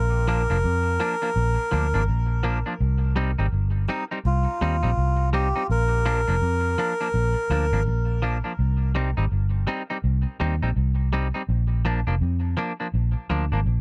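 Dark, lightly reverberant production frames this meditative, hypnotic roots reggae excerpt at 83 BPM with a swung sixteenth feel, where a round, punchy, foam-muted electric bass sits up front, a clean, compressed semi-hollow guitar with tape echo accompanies, and a reedy, breathy melodica with tape echo carries the melody until 7.8 seconds over chords alternating between Bb and Cm.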